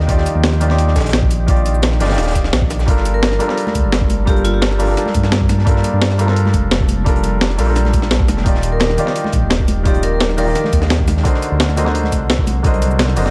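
A light small-room reverb with a faint mains hum frames this melancholic, dreamy liquid drum and bass excerpt in G minor at 172 BPM, where a polished grand piano with 12-bit sampler grit and dub echo provides accompaniment over a glassy, ethereal FM pad, an up-front rumbling detuned saw bass, a thumpy compressed electronic kick, a gritty sampler-style breakbeat kit with shaker, and a dark, saturated acoustic breakbeat kit with high-passed hats and snare in the background. A bright hard-mallet vibraphone with tape echo adds brief melodic phrases from 3.1 and 8.7 seconds, and dry, hard-handed congas enter at 3.7 seconds as the harmony moves from Ebmaj9 to Gm9, returns to Ebmaj9 and closes on D7b9b13.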